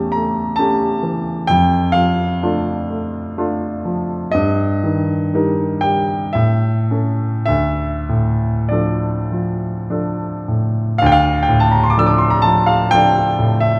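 A dark production places a grand piano up front in a concert hall, its moderate reverb lingering for about 2.1 seconds around a present, polished tone with short sustain. This is a romantic classical nocturne for solo piano, wistful and mournful in mood, moving in a slow, flexible triple metre shaped by rubato. The piano alone carries the music, ranging from D2 in the bass to E6 in the treble. Its harmony passes from A7/E to Dm/F, then to Eb/G at 4.4 seconds, before returning through A to Dm. The opening phrase gives way at 11.0 seconds to a restatement of the same material, and the recording ends at 13.8 seconds as a fragment cut from a longer piece.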